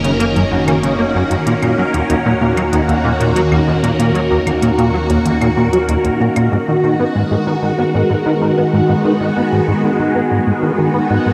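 A phased string machine, a plucky analog bass, a low analog drone and electronic hi-hat and claves open this mysterious, expansive passage of sequencer-driven space music at 95 BPM in G# minor. The bright, vintage strings sit up front with sustained sawtooth chords that swirl through ensemble chorus, phaser and shimmer reverb, moving from F#6 to D#m7. Beside them, the punchy, funky bass riff pairs sawtooth and square waves with a filter sweep and quick decay, thickened by chorus and tape echo. Underneath, the drone hums mellow and warbling in the background, while clicky, tape-toned hats and claves tick quietly through echo. At 6.5 seconds the drone and percussion stop, the harmony opens onto G#m9, and a barely audible, lo-fi, detuned pluck adds arpeggios laced with a noise layer until the cut at 11.3 seconds. A lush hall reverb with a 3.0-second tail gives the whole excerpt a deep, spacious glow.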